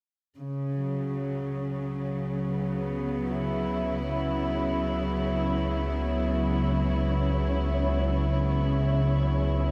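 Unfolding in free time, this dark ambient drone passage, cut from a longer piece, feels desolate and dark. A warm, intimate chamber cello section opens at 0.4 seconds with sustained bowed chords, played sul tasto with a soft attack and light vibrato, sitting close and up front as it fades out across the passage. At 2.1 seconds a deep, ominous, rumbling synth drone fades in beneath it, its detuned, wave-folded triangle and sawtooth tones arriving with a slow attack and long release inside its own reverb. At 2.3 seconds a grainy, flickering granular texture fades in, set in the background higher up, with a detuned triangle tone and built-in reverb of its own. A huge, wet ambient reverb with a long tail surrounds the ensemble, deepening the sense of emptiness.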